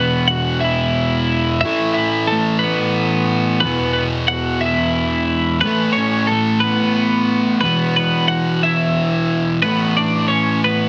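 Cathartic and bittersweet, this rock excerpt moves in a slow 6/8 at 60 dotted-quarter beats per minute, settled in A major with a tuning of A4 = 441 Hz. A bright, twangy twelve-string electric guitar carries the melody across a range of A3 to F#5, its clean, compressed tone trailed by tape echo. Beneath it, a dark, double-tracked fuzz guitar holds down the riff between E2 and A3, thick with distortion. Both guitars sit up front and play throughout the 10.9 seconds, alternating between E5 and Asus2 chords every couple of seconds. A moderate studio reverb gives the pair some air, while the dense, heavily limited modern master keeps the sound tight and forceful.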